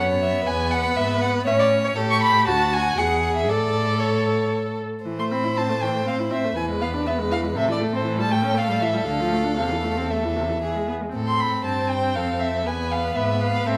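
The first violin leads this spirited, graceful classical-period string quartet passage in triple time, its rich, smooth, vibrato-laden melody sitting up front. A clear, close second violin traces an even line beneath it, while a more distant viola fills in the accompaniment and an expressive cello, also up front, anchors the bass with touches of portamento. After an opening section, the music turns into a darker minor-key passage at 5.1 s, all heard in a moderate recital hall reverb in this extract from a longer movement.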